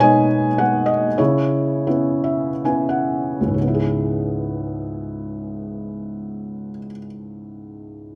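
A lyrical classical piece for solo felt-muted upright piano, bittersweet and cool in mood, unfolding in 3/4 with a free rubato feel, cut from a longer work. The piano sits up front with a soft, dark, intimate tone from its thick felt, its action noise audible as it ranges from C#2 to G#5. It slows through the opening passage, adds a fill from 1.9 to 3.6 seconds, then moves into a new section, all within a moderate recital-hall reverb.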